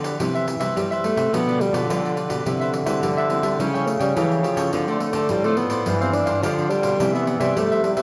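Playful and sunny, this samba and choro fragment moves at 106 BPM in a straight 4/4, cut from a longer piece in C major. A breathy alto saxophone enters at 1.0 s to carry the melody up front, mellow and jazz-styled with vibrato, subtone and a smooth top. Behind it, a whispered trombone plays an intimate second line with light vibrato, soft attacks and scooped notes. A crisp, picked cavaquinho and a very quiet nylon-string guitar supply the accompaniment, while a second thumb-plucked nylon-string guitar handles the bass, with a touch of finger squeak. A jingly pandeiro played with soft hands keeps the pulse as the harmony moves through Cmaj7, G7/B, A7/C#, Dm7 and G7sus4 before returning to Cmaj7, all set in the wet reverb of a recital hall.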